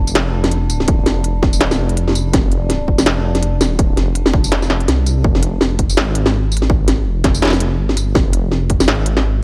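A swung, half-time drum and bass groove drives this dark fragment: a rumbling, saturated, detuned sawtooth bass sits up front beside an industrial kit of clanging snare, crisp hats and tambourine, and a heavy electronic kick joins at 0.9 s, both drum parts re-recorded in a large room, while an eerie, metallic FM drone with chorus and its own reverb hovers in the background until 5.2 s, when the harmony settles on an Fm chord.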